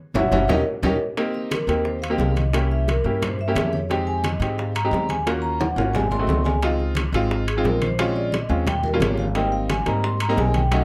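Lively and danceable, this brisk Afro-Cuban jazz excerpt in Ab major at 176 BPM opens with a band accent and a drum fill before the ringing, metallic vibraphone takes a solo from 1.2 seconds over a woody, thumpy pizzicato upright bass up front, clear short-sustained baby grand piano accompaniment, and background percussion of damped, low-tuned congas and tight, high-tuned bongos beside metal-shelled timbales, all in light reverb with close, detailed microphones.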